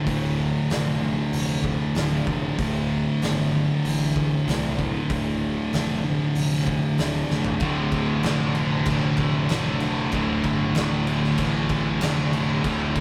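Sludgy and ominous, this stoner and doom metal excerpt opens on two dark, thick fuzz guitars grinding out a low riff, one set back in the mix, over a growly overdriven fingered bass and an oversized low-tuned drum kit with a fat snare, punchy kick and dark cymbals in a pumping stone room. After a drum fill, a bright, scooped high-gain guitar, double-tracked, joins the riff at 7.6 seconds. The rough rehearsal-room sound carries tube saturation and light reverb.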